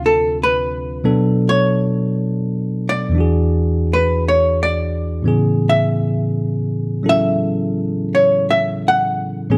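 Recorded with close, detailed microphones in a large studio whose moderate reverb adds a soft bloom, this short cut from a longer jazz ballad moves at a slow 57 BPM in 4/4 with a gentle swing and a tender, late-night mood in A major. A bell-like, bright tine electric piano sits up front as accompaniment, while a dark, clean hollow-body archtop guitar takes the picked melody as a solo from 0.1 seconds. The harmony drifts from Dm7 through Bm9 and E9 before settling on Amaj9 at 5.3 seconds.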